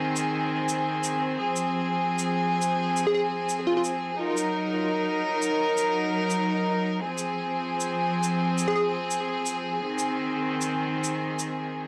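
Spacious and heavy, this half-time drum and bass fragment, cut from a longer piece, moves at 171 BPM in 4/4 with a swung sixteenth-note feel and sits in F phrygian, tuned slightly low. A rich chamber string section carries the piece from the opening to 11.9 seconds, holding bowed, earthy ensemble chords with light vibrato that sound distant yet up front, moving from Ab through F minor and Eb minor, back to F minor and finally to Ab. Just after the start, a compressed, pitched-down shaker with a sampler-style, gritty character ticks along in studio reverb, sitting low in the balance. A punchy, catchy unison lead appears only in two short bursts, first at 3.1 seconds and again near 8.7 seconds, combining detuned square and sine tones with a noise layer, a filter sweep and a moving notch, its fast attack and vibrato trailed by tape echo. The whole recording has a dry, gritty hardware character with transformer saturation and cassette tape color, set in a small room with light reverb.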